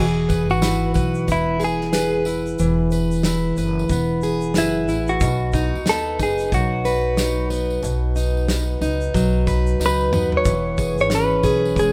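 A dry cut from a longer carefree acoustic pop tune with a sunny, swung 16th-note lilt, where a clean, compressed, direct-recorded electric guitar carries the melody up front over a picked, plugged-in steel-string acoustic guitar with audible finger squeak, a woody pizzicato upright bass, a small-room country drum kit with tight kick, snare, toms and shaker, and a jingly tambourine in the background, as the chords move from E to B and land on E6 just after a drum fill at 9.8 seconds.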